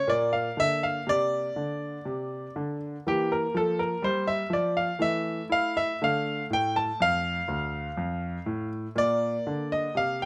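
Classical, baroque-style suite movement for solo grand piano in 3/4, introspective and flowing, with a rubato feel throughout this brief fragment cut from a longer piece. The clear, polished piano sits up front and intimate, close enough that the action noise of the instrument is audible beneath the notes, spanning from D2 up to A5. Light reverb surrounds a harmonic path that moves from Bb through Edim and A5/E to Dm, settling on Bbadd9 near 9.0 seconds.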